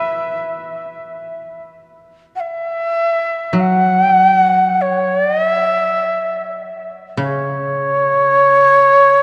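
This is Japanese traditional chamber music with a meditative, solitary mood, heard in a short passage cut from a longer piece. The pulse sits around 49 BPM in 4/4, but the feel is rubato, so time stretches freely. A breathy shakuhachi carries the melody from start to finish across its 9.2 seconds, staying between C#5 and F#5. Its end-blown bamboo tone is straight and expressive, with a crisp, chiffy attack, and it sits up front despite a distant quality. Beneath it, a mellow koto played with fingerpicks gives a woody, dry accompaniment, ranging from C#3 to B4 at a much lower level. The production is dark, set in a moderate cathedral-like reverb with a long 5.2-second decay, and the music moves from a brief opening into a longer second section at 2.3 seconds.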